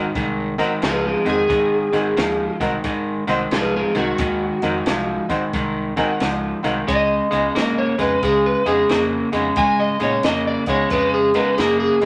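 A moderate studio reverb frames this swaggering, laid-back electric blues shuffle, a short slice from a longer piece with a swung 4/4 feel. An up-front, slightly broken-up slide guitar carries the melody throughout, over a twangy, picked rhythm guitar riff, a round, foam-muted vintage bass and a compact cocktail kit with a punchy kick, high-tuned snare and hi-hat that enters at 0.2 seconds. A bright, polished baby grand piano accompanies and adds a brilliant fill from 5.5 seconds just before the harmony moves from Ab7 to Db7 at 6.9 seconds.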